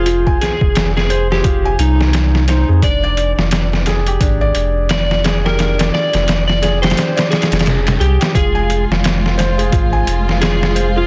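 A slide guitar with a dark, slightly broken-up tone carries a hypnotic, melancholic trip hop melody from the start, drenched in dub echo alongside felt-muted upright piano arpeggios whose soft action noise sits close and intimate, over a round, deep sine sub bass and an up-front, gritty, pitched-down and overdriven sampler-style kit with thumpy kick, medium-tuned snare and swung hi-hats. The harmony rests on F minor, shading to Fm69 at 2.8 seconds before settling back. At 8.3 seconds a lush, bowed symphonic string section enters with sustained, vibrato-laden chords, all within a dry, densely limited mix dusted with vinyl crackle in this short cut from a longer piece.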